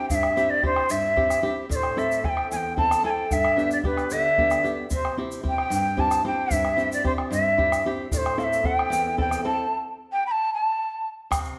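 A breathy large quena carries the melody up front, its wooden, end-blown tone soft in attack and gently rounded at the top, with a touch of vibrato that lends the line a melancholic yet festive air. Beneath it, a warm flamenco guitar is fingerpicked in accompaniment, with a faint finger squeak audible along the strings. A round, close bombo and a grainy, bright egg shaker, dry and near, give the 6/8 pulse its folk character. The harmony moves from C through A minor and G, back to C and then to A minor again, before the ensemble breaks into a stop at 9.7 seconds. The players sound as if performing live together in a stone room whose wet reverb lingers around them, in this short cut from a longer Andean piece.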